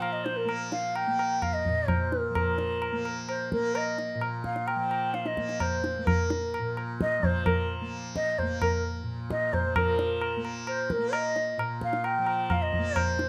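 A straight 4/4 pulse at 130 BPM carries this devotional, radiant fragment of Hindustani classical music in raga Durga on Bb, tuned to A4 = 441 Hz, where an airy bamboo bansuri sings the melody between Bb4 and G5 with vibrato and a crisp attack, a high-tuned, dry tabla with a short ring sits up front, and a softly plucked tanpura lays a buzzing, shimmering drone beneath, all in a small room with close, detailed microphones and a modest reverb.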